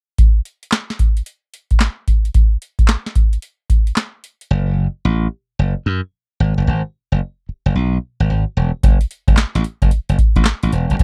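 A booming analog drum machine with a deep kick, crisp snare, short-room handclaps and metallic hi-hats drives this confident, slick new jack swing excerpt with a swung sixteenth-note feel, then gives way at 4.5 seconds to a glassy, punchy slap bass that plays alone up front until the tape-tinged drums return at 8.8 seconds, in a dark, dry R&B production.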